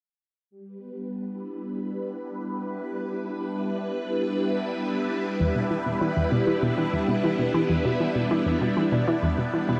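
Drenched in a huge reverb within a dark production, this expansive, mysterious stretch of sequencer-driven space music in E minor at 98 BPM opens on a swirling, vintage string machine holding an Em7 chord with ensemble chorus, phaser and a filter sweep, until at 5.4 seconds a round, nasal analog pluck riff with chorus and tape echo takes the low register up front while a very quiet clean electric guitar picks arpeggios.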